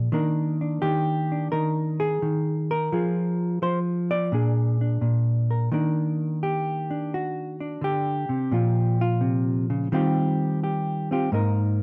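A lone electric hollow-body jazz guitar opens this short solo jazz passage, its clean, dark, fingered tone sitting up front in a moderate club reverb as it moves through Ebmaj7, Fm and Bb7 at a swung 86 BPM in Eb major. From 5.7 seconds the guitar takes a solo over a second section, drifting through Bbmadd9 and Eb69 before landing on Absus2. The mood is sophisticated and warm, with a dark, warm production.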